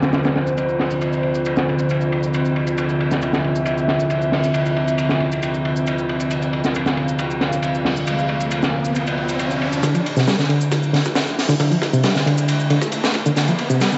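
A crunchy breakbeat kit drives this gritty, swaggering breaks excerpt at 136 BPM in a straight 4/4. It sits up front with a tight kick, a high-tuned snare, hi-hat and dark ride cymbal, all saturated with a rolled-off top, while a tape-toned analog shaker ticks in the background. From the start a deep, moody analog pad holds a Dm9 chord in D minor, its detuned, wave-folded tone thickened by chorus and pumped by sidechain. An electronic riser creeps in from 7.9 seconds. At 9.8 seconds a reedy, barky electric piano takes up a low riff with overdrive, fast tremolo, 12-bit sampler grit and analog delay, and a filter sweep runs over it as the section builds. A thick, detuned saw bass hovers barely audible beneath, and a drum fill at 13.4 seconds closes the build inside a dry, crackling recording with a faint small-room reverb.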